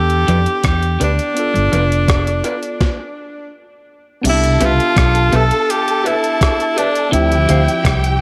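Lightly reverberant digital ambience gives this short lovers rock reggae excerpt a smooth, longing glow at 83 BPM in a straight 4/4. A clear tenor saxophone with light vibrato and tape echo carries the melody up front, over a dark, round, foam-muted fingered bass and a thumpy 12-bit drum machine whose kick, snare, rim click, hi-hat and crash sit under gated reverb. A barky tine electric piano, lightly overdriven and echoed, fills out the accompaniment, while a very quiet, scooped clean guitar plays a low riff and a slightly broken-up guitar through a small old amp adds lo-fi stabs in the background. The band breaks for a stop from 2.8 to 4.2 seconds, and at 4.3 seconds a lush, bowed string section enters with a second line under tape echo. The harmony moves from Em7 and a rootless G7 to Cmaj7 and Dm11.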